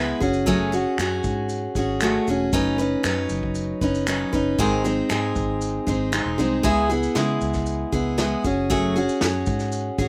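A bright, full-bodied picked steel-string acoustic guitar sits up front in this reflective, tender acoustic pop excerpt, carrying the accompaniment from G#2 up to B4 at a straight 117 BPM in 4/4. Beneath it, a vintage muted fingered electric bass gives a dark, round, foam-muted tone with a punchy, amped edge, ranging from E1 to C#3. A vintage brush drum kit enters at 0.2 seconds with finger snaps, kick drum, shaker and snare, its lo-fi, muffled sound gritty and saturated with a rolled-off top, a medium-tuned snare played with brushes and a punchy kick. The harmony moves through F#madd9, Badd9/F#, G#, C#m7 and back to F#madd9, lending the passage a gently unresolved, wistful colour. A light reverb places the parts in a soft studio-room space, and the tuning sits slightly below standard at A4 = 439 Hz.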